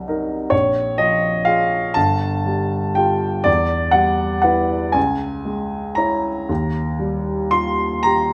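In a slow, flowing 6/8 shaped by free rubato, this short excerpt from a longer classical piece unfolds in an impressionist spirit, serene and luminous. A lone baby grand piano carries everything, its tone open and richly sustained, sitting up front in a light reverb. The range stretches from deep G1 in the bass up to C6, giving the sound a spacious, glowing breadth. The harmony drifts through coloured, unresolved chords, moving from Cm7b5 through Fadd9/G, Em and Dbm before settling on a hazy Eb69 near 6.5 seconds. Lingering resonance lets each chord bloom and blend into the next across its 8.3 seconds.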